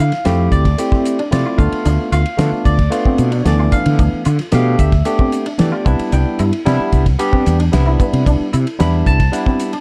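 The recording has a dark, warm sound with a small room's ambience around it, and this short section is cut from a longer piece of funky, driving electric jazz fusion in a straight four. Up front, a barky tine electric piano plays bright, clean accompaniment through a combo amp, dressed in a lush chorus. A fretless electric bass sits equally forward, its tone warm, direct and amped, and it drops out at 9.3 seconds while the others carry on. A damped 70s drum kit comes in at 0.1 seconds with a dry, smooth character: a fat snare, a tight kick, hi-hat and ride with dark cymbals, and a rolled-off top end. Further back, a twangy, picked clean electric guitar adds stabs with an ensemble chorus, over a harmony that moves from Dm9 to G9/D and settles on Cmaj9 at 5.9 seconds.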